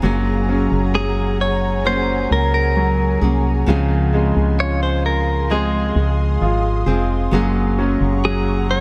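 Emotional and heartfelt, this slow pop ballad excerpt at 66 BPM sets a clear grand piano and fingerpicked nylon-string guitar, both trailing dub echo, over a hollow, dark FM bass that sits up front, while an ethereal, airy pad with ensemble chorus hovers above and a compressed, direct-recorded clean electric guitar enters at 1.0 seconds with an echoing melody over Gbadd9 and Dbmaj7 chords in a light, reverberant, echo-heavy mix.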